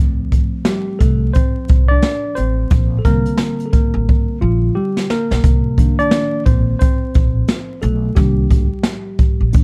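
A moderately swung sixteenth-note groove in 4/4 drives this smoky, nocturnal jazz-hop passage. A brushed drum kit, up front with a boomy kick and medium-tuned snare, comes in at 0.3 seconds and plays a fill from 4.1 to 5.4 seconds. A woody pizzicato upright bass holds the low end while a worn, slightly out-of-tune tine electric piano solos in a mellow, clean, direct tone, all set in a dark, dry production with vinyl crackle, cut from a longer piece.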